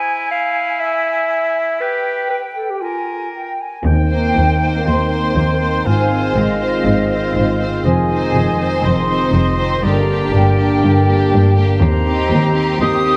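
Drenched in the long, wet reverb of a concert hall, this triumphant, adventurous stretch of heroic film score moves at 121 BPM in 4/4, opening with an airy flute section, a clear solo oboe and a background clarinet weaving woodwind lines. At 3.8 s a mellow French horn section and very quiet trombones begin sustaining chords, and at 3.9 s the music settles into Eb major over a smooth cello section and a soft-attack double bass section. Just after, a rich, focused violin section carries the melody, joined by a very quiet second violin line with a smooth top and an expressive viola section with portamento in the background, as the harmony passes through Ab6, Fm7 and Gm before returning to Eb6.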